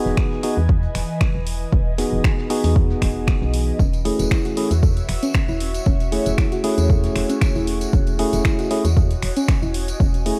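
Deep house with a soulful, warm feel and a gentle swing, where a clean, up-front tine electric piano plays stabs through a combo amp with tape echo, low-pass filtering and sidechain pumping over an airy, breathy pad drifting beneath with chorus and phaser. A woody, round FM bass and a punchy, up-front electronic kick anchor the groove, joined by a deep house kit of finger snaps and dark hats plus a very quiet, gritty breakbeat kit of hi-hat, shaker and snare. At 3.8 seconds the harmony moves from Emaj7 to F#m7/E as a soft, round pluck enters in the background with arpeggios and a jingly, bright tambourine comes in, all under a bed of vinyl crackle in this cut from a longer piece.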